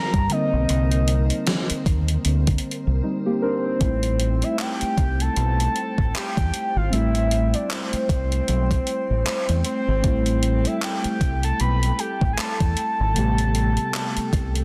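Late-night and moody, this short contemporary R&B cut in A minor sits at 77 BPM with a lazy 16th-note swing, moving from Cm9 to Am9 after a brief silent gap at 3.0 seconds. A mellow, round octave-layered synth lead carries the melody through chorus, phaser and digital delay, over muted, felt-like keys, a glassy, ethereal FM pad pumping softly in the background, and a deep, dark dub fingered bass sitting up front. A gated 80s drum machine punches through with a thumpy kick, overdriven gated-reverb snare, handclaps and hi-hat, all in a dry, dense and heavily limited modern mix.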